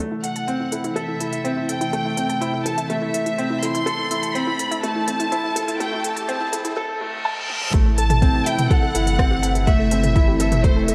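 A lush, warbling sawtooth pad with chorus holds sustained chords in A dorian while a punchy, detuned pluck with tape echo and sidechain pumping ripples arpeggios in the background. A clear, woody upright piano plays a riff up front. This intimate, cinematic piano and strings electronica moves at 124 BPM in a straight 4/4, tuned to A4 = 437 Hz. A rich studio violin section carries the melody close and up front, bowed sul tasto with light vibrato and a soft attack, over a deep house kit of smooth hats, rim click and toms. During the build-up a filter sweeps across an analog synth pad, and a very quiet riser and reverse cymbal arrive at 4.8 seconds. After a drum fill, the drop lands at 7.7 seconds, where a round sine sub bass with pumping and a deep, layered electronic kick join, all set in a moderate echo chamber reverb.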